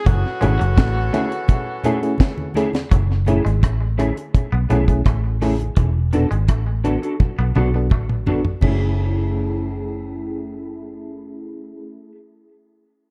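A straight 4/4 groove at 84 BPM carries this smooth, bittersweet lovers rock reggae excerpt in F# minor, cut from a longer piece and moving from F#m9 to E9sus4 at 5.8 seconds before returning to F#m9. The deep reggae drum kit sits up front with a high-tuned snare, tight kick, rim click, hi-hat, toms and crash, its rolled-off top touched by tape echo, and a drum fill runs from 7.2 to 8.6 seconds. Beneath it, a vintage muted fingered bass, round, punchy and foam-muted, holds the low end through the whole clip, while very quiet congas with soft hands add a thin-skinned, live-room patter until 9.0 seconds. A distant, roomy tenor saxophone with light vibrato states a brief melody over the opening 2.2 seconds, joined by a bright, vintage saxophone section on a second line. A clean, twangy guitar riff bathed in lush chorus and tape echo plays until 8.1 seconds, as a full-bodied FM electric piano with tremolo and a slightly broken-up, lo-fi guitar playing stabs through analog chorus fill out a dark production with light small-room reverb.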